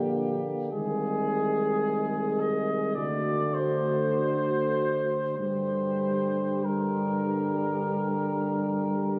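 Solemn and elegiac, this hymn-like classical fragment for brass band moves in a slow, rubato 4/4 at roughly 47-55 BPM in G minor, tuned slightly high to A4 = 445 Hz. A warm French horn section carries the second line in the background. The mellow, soft-attacked trombone and a close-miked euphonium fill out the accompaniment, and a tuba with a smooth top anchors the bass. At 0.7 s a clear flugelhorn with a vintage character enters up front with the melody, and like the other brass parts it sings with a light vibrato through to the close at 9.2 s. The harmony passes from Gm/Bb through Ab/C and D7 before settling on G minor. A moderate church reverb surrounds the band, heard through a phone recording made in the room, with added club reverb and compression.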